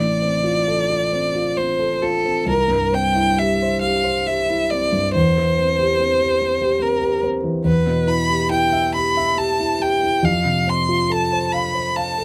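This romantic classical duo for violin and grand piano is a tender passage of about 12 seconds, cut from a longer piece. It moves at 70 BPM in 3/4 time, with uneven, rubato beats that give the phrasing a free, breathing quality, and it is tuned to A4 = 441 Hz. The violin carries the melody from A4 to C6 with a clear, intense tone, a singing vibrato and an airy bow, sounding close and up front as a single player. The grand piano plays the accompaniment across a broad span from A1 to F5, its warmth sitting up front alongside the violin, just a touch softer. Both instruments play throughout, over a harmony that moves from F/A through C, C/E and Em before settling on F at 10.2 seconds. Close, detailed microphones and a light reverb keep the sound intimate and present.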